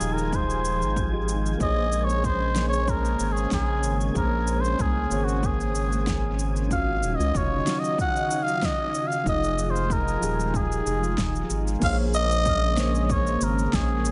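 A 94 BPM groove with a gentle swing on the sixteenths underpins this warm, wistful sunset chillout piece in Bb minor, where a raspy, cup-muted trumpet sings a jazz-style solo up front through dub echo over soft, phaser-tinged electric-piano-like keys, a lush detuned pad, a round, up-front analog bass with tube saturation, a punchy overdriven electronic kick and a deep house kit with a fat snare, shaker and crash, while an airy, wind-like noise texture breathes in the background until 11.8 seconds, all moving through Fm9, Bbm9 and Ebm9 in an echo-heavy, dark-topped mix cut from a longer piece.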